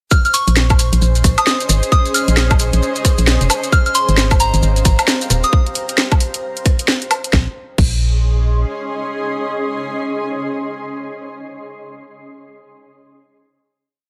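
A dark, up-front low end and a cloudy, shifting haze of reverb set the sound of this short, moody and bouncy two-step garage piece with a swung sixteenth-note feel. An overdriven electronic kick carries the two-step pattern alongside a layered garage kit with a cracking snare, skipping swung closed and open hats, rim clicks, a high woodblock and a crash. Beneath them, a hollow, organ-like FM bass plays a skipping syncopated line, while grainy maracas add hand-played sixteenths from the background. A soft, pure synth bell with a warbling vintage chorus and digital delay carries the melody in short phrases over an airy, breathy pad that holds a high note and pumps against the kick. The drop ends at 7.3 seconds, and a bright, blurred granular cloud pad with slowly shifting chords carries the final chord out to 11.5 seconds.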